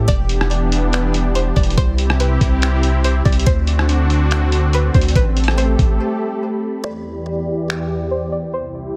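Hazy and spacious, this atmospheric cloud-rap piece moves at 142 BPM in a half-time feel, with a warm, detuned, warbling analog pad holding sustained chords through Em7, Cmaj7, D7 and Am9 over a deep, mellow sine 808 bass that stops at 6.0 seconds for a short break. A muffled, pitched-down sampler-style drum kit of thumpy kick, hi-hat, rim click and finger snaps sits up front with a small-room character. A twangy, string-like resonator pluck with tape echo carries the melody, while a breathy, wind-like noise texture drifts very quietly in the background, and a filter sweep runs from 6.8 seconds as the chords return to Em7.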